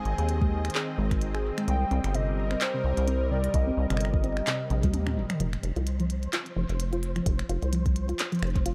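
Over a lightly swung sixteenth-note pulse in 4/4, a deep electronic kick and a glitchy kit of finger snaps, handclaps, clicky hi-hats and toms drive this playful, intricate IDM fragment cut from a longer piece. A rubbery, resonant acid bass with tube saturation sits up front, while a soft, round pluck spins arpeggios through chorus and digital delay. For the first 4.9 seconds a warbling, nostalgic lead with vibrato carries the melody over a smooth, detuned sawtooth pad, moving from Ab to Cm7. A drum fill and a band accent lead into a new section at 5.4 seconds, where the harmony settles on F5, and shortly after a grainy, flickering granular texture drifts in with its own reverb. The production is dark and digital, with the drums set in a studio room.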